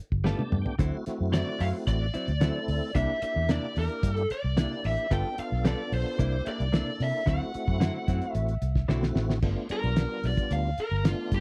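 Straight-eighth soul blues with a laid-back, rollicking mood, built on a thuddy, cloth-damped drum kit and a round, foam-muted fingered bass sitting up front, a lightly overdriven tonewheel organ turning slowly through its rotary speaker, warm compressed stabs from a clean direct-recorded guitar, and an overdriven lead guitar from a small cranked amp that carries the melody and takes a solo at 9.4 seconds, all in a dry, close 1970s-style studio sound.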